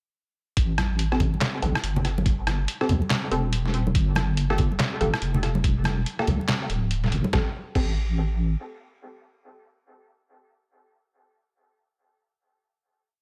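Deep dubstep at 142 BPM in a half-time, swung feel, cavernous and brooding in A phrygian, where a short drop from 0.6 seconds runs over Am7 and Gmadd9 before settling on a final Am7 chord at 7.3 seconds. A dark, wobbling sine-and-triangle bass sits up front with chorus, joined by a muffled, pitched-down thumpy kick and an up-front sampler-style trip hop kit of snare, closed hat, rim, clap and crash, all re-recorded in a small room, while soft-handed congas echo in the background. Sparse, muted sawtooth chord stabs with phaser, lush chorus and dub echo arrive at 1.1 seconds and recur until 11.0 seconds in a dry, echo-heavy mix.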